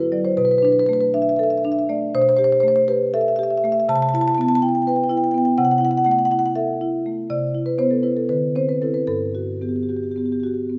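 Flowing and warm, this short excerpt from a contemporary classical piece for solo marimba unfolds in a rubato 7/8, its eighth-note pulse ranging between 221 and 252 BPM. The marimba, played with medium mallets, sounds woody and up front, its rosewood bars ringing across a span from G2 to A5 for the full 10.8 seconds. The harmony drifts through colorful extended chords, moving from Bm7 through Am9/B, Cmaj7 and Esus24/C before returning to Cmaj7 and passing through Dsus2 to settle on Gmaj9 at 9.1 seconds. The tuning sits slightly high, with A4 at 444 Hz. A moderate recital hall reverb, like that of a church or concert hall, surrounds the instrument with a resonant space.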